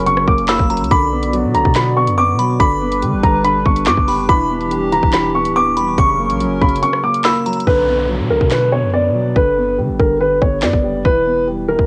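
Dark and menacing, this half-time drill hip hop cut at 142 BPM in B harmonic minor sets an up-front, mellow grand piano melody with tape echo over a boxy low piano accompaniment, a deep sine 808 bass and a hard-clipped, sharp-snared drum kit with handclaps and rim clicks, while a glassy, warbling FM bell and a hollow, flute-like pad fill the first 7.7 seconds. The kick drops out at 6.8 seconds, then the hi-hats fall away and an electronic downlifter sweeps through a sparser closing passage, all with a cassette-tape home-recording character.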